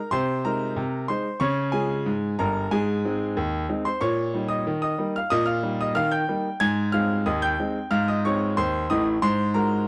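A dry, close studio sound with a 1970s character puts a clear concert grand piano up front, its natural tone carrying a deep bass from G1 up to Ab6 under a touch of studio reverb. This jaunty, cheerful ragtime piece moves in a straight 2/4 at 92 BPM in Ab major, tuned to A4 = 438 Hz, with the solo piano playing throughout the section. The chords travel from Ab/C through Db and Eb7/Bb, settling on Ab before turning to Ab7 at 9.2 seconds as the cut from a longer piece ends.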